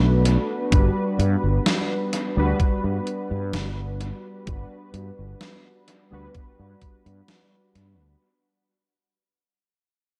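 A straight 4/4 pulse at 64 BPM, set by a thumpy, tape-warm electronic kick and a gated 80s digital drum machine whose overdriven hi-hat and snare carry gated reverb and analog delay, underpins this woozy, faded vaporwave excerpt in G major, where a growly fretless electric bass under a low-pass filter sweep sits up front beneath detuned, warbling, nostalgic lo-fi synth keys bathed in analog chorus and delay, moving from Bm7 to Gmaj7 in an echo-heavy mix that fades out across its 8.2 seconds.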